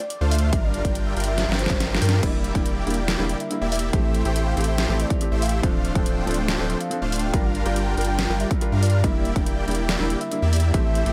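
Emotional and lush, this future bass clip moves at 141 BPM in 4/4 with a half-time feel, tuned slightly below standard pitch, and cycles through the chords Dm7, Gm7, Em7b5 and Am7. A velvety, smooth synth lead carries the melody from the start, sitting in the background with chorus, vibrato, tape echo and sidechain pumping on its mellow, wave-folded sawtooth tone. Huge detuned supersaw chords play the riff with pumping sidechain, while a deep, thick saturated sub bass sits up front beneath them. An overdriven dubstep kit with a deep snare, hi-hat and crash plays a drum fill from 1.4 to 2.2 seconds, joined by a punchy, up-front electronic kick, both re-recorded in a small room. A soft, felt-muted upright piano enters at 2.2 seconds, adding an intimate accompaniment with audible action noise, all in a dry mix with little reverb.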